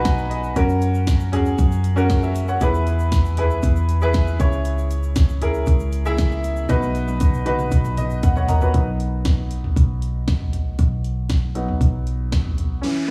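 A steady, straight 4/4 pulse at 117 BPM drives this short, hopeful piano-driven pop excerpt in B major, with an up-front pop drum kit of punchy kick, fat snare, hi-hat and toms, its layered, electronic sound re-recorded in a small room. Beneath it, a vintage muted fingered electric bass sits dark, round and foam-muted, while a grainy, bright egg shaker stays close and dry in the background until 8.7 seconds. The clear, woody upright piano carries the harmony up front through a B, F#, E, C#m progression, opening with a brief fill before a drum fill leads toward the turn. At 8.7 seconds the piano steps into a solo over the groove in the second section, its open tone ringing through the modest room ambience. A short electronic downlifter closes the passage at 12.8 seconds as it breaks off mid-piece.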